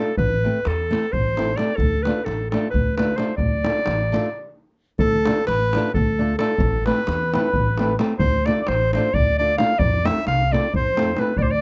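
Lightly reverberant and cut from a longer piece, this fiery, bittersweet Balkan wedding-band tune in a straight 7/8 at 262 BPM (eighths) puts a bright, smooth-topped, classical-style clarinet up front on the melody over fingerpicked acoustic flamenco guitar, woody pizzicato upright bass and a tight, distant davul, moving between Am and Dm to a brief stop at 4.3 seconds before a reedy, mellow accordion with slow beating enters in the background at 5.0 seconds as a second line and the harmony finally reaches F.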